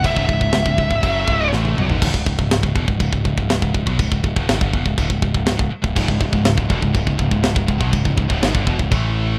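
Heavy metal in C# minor at 122 BPM, dark and epic, this short cut from a longer piece opens with an up-front, dark-toned lead guitar playing a melody at E5 through delay until 1.5 seconds, while a bright, picked high-gain guitar and a scooped companion churn low riffs in the background. A drum fill from 1.5 to 2.0 seconds leads into the next section, where the scooped guitar drops out and returns at 6.0 seconds, and a growling, overdriven picked bass anchors the bottom. The tight acoustic kit sits forward with a high-tuned snare, tight kick, china and crash cymbals and toms, its top end rolled off, all in a rough home-demo mix with small room ambience.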